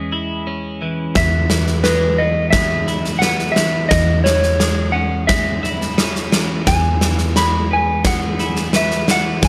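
Beginning in a straight 4/4 at 87 BPM, a huge arena drum kit with a punchy kick and medium-tuned snare enters up front at 1.2 seconds, its pumping hall sound driving this soaring, euphoric post-rock excerpt in E major, tuned to A4 = 437 Hz. A slightly broken-up electric slide guitar carries the melody high between B4 and B5 through analog delay, over clean, compressed twelve-string arpeggios that also pass through analog delay, while a dark, round hollow-body short-scale bass holds a low E. The harmony moves between C#m/E and E in a moderate booth ambience, cut from a longer piece.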